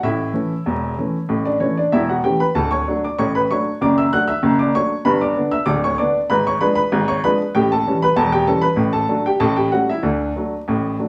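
Lively and playful, this brief ragtime passage, cut from a longer piece, moves at 96 BPM in a straight 2/4 in D major. A solo upright piano carries it, woody and intimate, with audible action noise, short sustain and an up-front presence, while the harmony travels from an opening A through D, D/F#, G and a G#dim7 at 6.3 seconds to A7, settling on D at 10.0 seconds. Small room ambience and moderate studio reverb surround the playing, and a layer of vinyl crackle lends an old-record patina.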